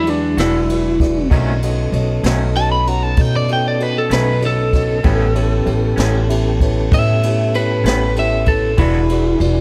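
A lightly driven lead electric guitar carries a solo through this brief clip, cut from a longer, laid-back and rollicking slow blues in 12/8 at 64 BPM with a straight feel. Its tone is slightly broken-up and compressed as it is picked over a thumpy, woody upright bass that sits up front. A mellow tonewheel organ holds soft, flute-like chords with audible key click through a slow rotary speaker, while a dark upright piano adds intimate, vintage accompaniment with its action noise audible. A jazz kit played with brushes brings a high-tuned snare, boomy kick and ride cymbal, and a twangy, lo-fi electric guitar through a small old amp, fingered with tremolo, sits in the background from 0.4 to 9.0 s. The harmony moves through E9, B9 and A9 before returning to E9 at 8.8 s, and a light small-room reverb gives the band a close studio feel.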